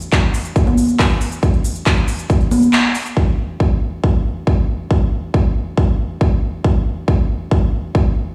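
A big-room dance drum kit opens this euphoric, soaring trance cut at 138 BPM in a straight 4/4, its congas, handclaps, crisp hats and shaker sounding overdriven and layered, up front and re-recorded in a large room. The hats and percussion pump against a sidechain and sit under a low-pass filter, which also shades the kit's room sound. A punchy, layered electronic kick arrives almost at once and drives the groove up front. At 2.7 seconds the band hits an accent as the kick drops out, and the kit falls away at 3.1 seconds. The kick then carries the next section alone, heard through light reverb that suggests a big sound system playing into a bare stone room.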